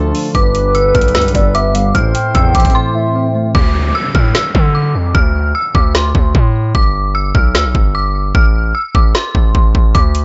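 A dark, hard-hitting half-time trap excerpt opens on an eerie, inharmonic synth bell melody with chorus and delay, a mellow tine electric piano, a classical-style woodwind section holding smooth chords, and a distorted, saturated 808-style bass. Up-front trap drums with a knocking kick, woody snare and metallic hats join at once, and a hollow, soft clarinet-like synth lead with vibrato adds a second line. After a short break, the woodwinds and lead stop at 3.5 seconds with the piano just after, the hi-hats fall silent and an electronic downlifter sounds while the bell, heavy bass, kick and snare carry on in a dry, closed-in mix with a dulled top end.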